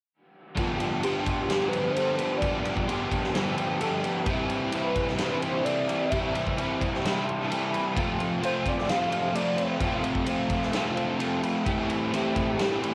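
A hazy home cassette recording, touched by moderate spring reverb and small-room ambience, frames this dreamy shoegaze and dream pop rock excerpt built on a G7sus4, Cmaj7, F and Am7 progression. From 0.6 s, a big, natural arena drum kit with punchy kick, snare and ride cymbal plays alongside two riffs: an up-front, crunchy overdriven guitar with analog chorus, and a raw garage guitar with reverse reverb sitting in the background. Beneath them, very quiet, dark, lo-fi fingered arpeggios come from an electric guitar through a small old amp, and at 1.0 s a velvety synth lead enters with a smooth, detuned sawtooth-and-triangle tone, chorus, vibrato and tape echo to carry the melody.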